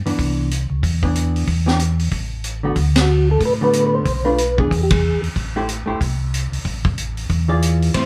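A soft, flute-like tonewheel organ carries the melody from 3.0 to 5.2 seconds, colored by a slow rotary speaker and chorus vibrato, in this smoky, bluesy soul jazz organ trio excerpt with a swung feel. Beneath it sit a round, mellow organ bass line and a dark, compressed hollow-body electric guitar, both up front, while a gritty, saturated vintage drum kit with punchy kick, high-tuned snare, hi-hat and ride cymbal keeps time and joins the band accents. A wet club reverb places the group a little further back in the room.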